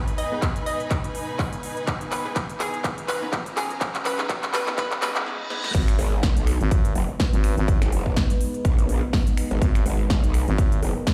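The rhythm comes from a punchy, overdriven electronic kick up front and a layered dance kit of snare, finger snaps, handclaps, crisp hi-hats and crash cymbal, swung on the sixteenths at 124 BPM in 4/4. This gritty, aggressive bass house passage in G# minor opens with a build-up over a G#m chord. A moody ambient pad sits in the background with a filter sweep, while a rich bowed string ensemble with vibrato, a hollow, bouncy square-wave pluck melody with lush chorus, 12-bit sampler grit and dub echo, and bold orchestra-hit-like stabs with reverb and echo fill out the texture. A drum fill, a riser with a reverse cymbal and a short break lead to the drop at 5.7 seconds. There the growling FM bass and a wobbling, detuned, saturated growl bass take over, both overdriven, pumping against the kick and up front. The whole track plays through a big sound system in a bare stone room, giving it a light, echoing ambience.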